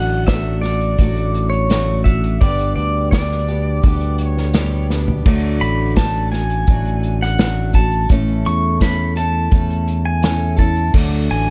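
A dark, warm production with the ambience of a small room frames this short cut from a longer folk rock and heartland rock piece, carrying a warm, nostalgic mood at 84 BPM in a straight 4/4. A clean pedal steel guitar, played with fingerpicks and compressed, sings the melody in a high register with slide and volume swells, while a boxy old ladder-braced acoustic guitar is picked underneath, with finger squeak audible on the strings. A punchy fingered electric bass sits up front with a direct, amped tone, holding the low end. An unplugged drum kit, played with bundle sticks, enters at 0.3 seconds with dark cymbals, a medium-tuned snare, a punchy kick, hi-hat and toms, and a drum fill from 4.9 to 5.3 seconds. The harmony moves from D to G, back to D at 5.3 seconds, then to A and home to D.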